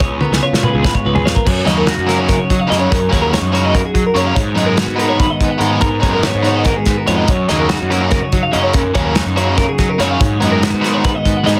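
A loose, acoustic indie drum kit sits up front in this playful, bright slice of math rock and Midwest emo, with a punchy kick, medium-tuned snare carrying a touch of soft clipping, and dark cymbals in a small room. It opens with a drum fill from 0.2 seconds over a C#7 chord before the music settles into its main 7/8 stretch at 1.5 seconds. Two clean, twangy twelve-string electric guitars shimmer throughout: one plays compressed chordal accompaniment in the background, while the other spins high arpeggios dressed in subtle chorus and plate reverb. A growly fuzz bass, picked and overdriven, drives the low end. At 1.6 seconds a double-tracked, overdriven electric guitar riff jumps to the front as the harmony moves between F#6 and G#m9, all within a dense, heavily limited modern master.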